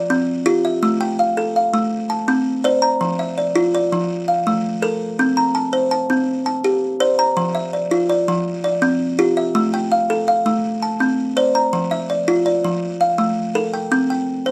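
Hypnotic and warm, this short cut from a longer southern African traditional piece sets a solo buzzing kalimba up front, playing a woody, thumbnail-plucked, mbira-style interlocking cycle at 110 BPM in a straight 12/8 from F3 up to Bb5, circling through chords such as Bbmaj9, Dmadd9/F and Gm9 over 14.5 seconds, with light reverb and lossy compression artefacts.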